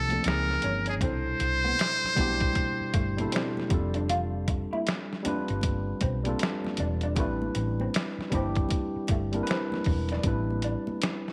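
Introspective and smooth, this short neo-soul and R&B excerpt moves at 78 BPM in A minor with a swung sixteenth-note feel, opening on a muted trumpet melody, buzzy and thin with light vibrato and scooped notes, that plays up front only until 3.7 seconds. Beneath it, a worn, slightly out-of-tune tine electric piano with light overdrive carries the accompaniment through chords like C#maj13, F69 and Am11. A dark, lo-fi electric guitar through a small old amp adds a second line bathed in lush chorus, a round, punchy hollow-body bass anchors the low end, a gritty, pitched-down boom bap kit with a thumpy kick sits up front, and very quiet high-tuned congas add texture in a light digital ambience.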